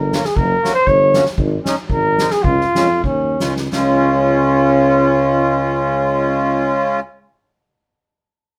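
Light reverb gives this short passage, cut from a longer alpine folk dance tune, a gentle sense of space. A flugelhorn with a soft attack and light vibrato carries the melody in a classical style, sounding roomy and distant yet up front, while a mellow tuba supplies the bass beneath it. A reedy accordion with slow beating fills in the accompaniment. A soft-mallet drum kit with dark cymbals, a medium-tuned snare and a boomy kick adds a natural acoustic pulse until it drops out at 3.9 s. The festive, bouncy music moves in two with a lilting swing and a rubato feel, slowing down from 1.4 s as the chords pass through Gb, Absus4, Ab and Db, before a second section begins at 3.7 s.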